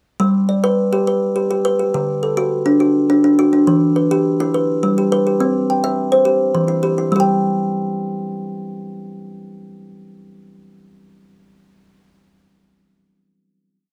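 A solo kalimba opens at 0.2 seconds with a woody, ringing thumbnail pluck, spinning an interlocking ostinato in a straight 12/8 over a simple cycle of G, D, E minor and C in this short, hypnotic piece of southern African traditional music. Its tone is bright and mid-forward with a hollow box resonance, captured up front by close, detailed microphones with a light reverb. At 7.1 seconds the pattern gives way to a single final note that rings until 10.6 seconds.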